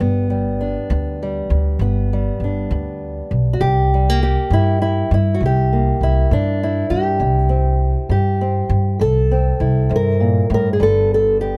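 A dark, boxy, fingerpicked ladder-braced acoustic guitar with old strings carries the melody up front in this gritty, rollicking 12/8 acoustic country blues excerpt at 67 BPM, tuned to A4 = 438 Hz, while a thumpy, bright pizzicato upright bass with steel strings is also up front; both parts share a woody tone, caught by close, detailed microphones with little reverb as the harmony moves from G to C7 at 3.6 s and back to G at 10.8 s.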